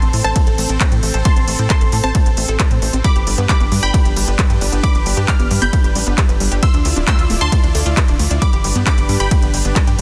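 A dense, heavily limited modern master wrapped in digital ambience carries this bittersweet, euphoric uplifting trance excerpt at 134 BPM in a straight 4/4, moving through Am, G, Dmadd9 and back to G. A bright, detuned unison pluck leads the melody through phaser, tape echo and sidechain pumping, shadowed by a very quiet sine-tinged second pluck line, while a lush supersaw pad with a sub octave holds sustained chords and a mellow, chorused arpeggio synth ticks away in the background through phaser and digital delay. Underneath, a tight, driving sequencer bass with tube saturation and a moving notch pumps alongside a techno kit of handclaps, smooth hi-hats and ride cymbal, with an up-front, punchy electronic kick from 0.4 to 9.8 seconds.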